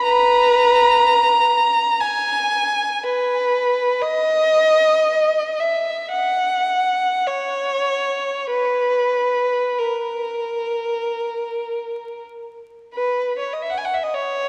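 A solo violin, bowed by a single player and placed up front, sings with a focused, vibrato-rich tone and a smooth top as it moves through a serene, nostalgic passage of free, rubato classical music. Cut from a longer piece, the unaccompanied line unfolds across about 14.5 seconds within the range of A#4 to A#5. A long church reverb and vinyl crackle give the dark production a wistful, warm glow.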